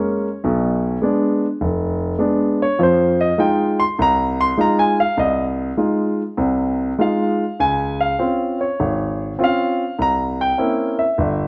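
Heard through worn, warbling cassette tape with drifting pitch and a moderate large-studio reverb, this moody, cool solo jazz passage, cut from a longer piece, features a warm, polished grand piano held up front from 0.0 to 11.5 seconds, ranging from F1 to C6 at 101 BPM in 4/4 with a swung, rubato feel in F minor as it moves through Bdim7, Fm7, Dbmaj7 and C7b9.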